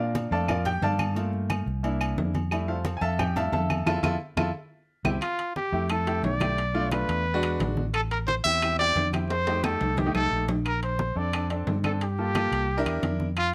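A breathy, mellow trumpet carries the melody from 5.2 seconds, its soft attack and vibrato sitting up front in a jazz solo voice over a sunny, lively Afro-Cuban jazz groove in 4/4 with a straight feel. Before it arrives, a clear, woody upright piano opens the passage, taking a featured solo through the opening seconds over changes that begin on Bbmaj7, while drum fills and a band accent punctuate the end of that stretch. A fretless electric bass, amped and up front, anchors the harmony beneath, and low-tuned congas played with soft hands ring quietly in the background. Ringing metal-shell agogo bells and timbales add a close, dry sparkle, joined by compressed, slightly saturated woody claves set further back. A light reverb gives the ensemble a natural space in this fragment cut from a longer piece, which closes on a Gm7 to C7 turn.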